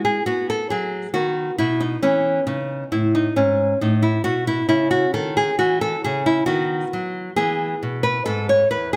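A solo nylon-string guitar opens this radiant, flowing fragment of a classical, baroque-style dance in a rubato three, its small, close, fingerpicked tone carrying audible finger squeak as the harmony turns toward C# minor at 4.7 s and settles back on E by 7.4 s, all set in a moderate recital-hall reverb.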